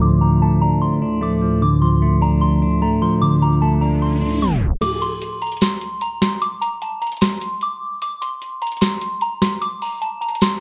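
A soft, pure FM synth bell with chorus and phaser rings over a clean, picked electric guitar and a hollow, flute-like pad holding a D minor chord in this brooding, hard-hitting trap piece at 150 BPM in half-time, as a filter sweep, an electronic riser from 3.7 s and a tape stop lead into a break at 4.8 s where the bell carries on over a booming analog drum machine with crisp snare, metallic hi-hats and crash cymbal, set in a dark production with light reverb.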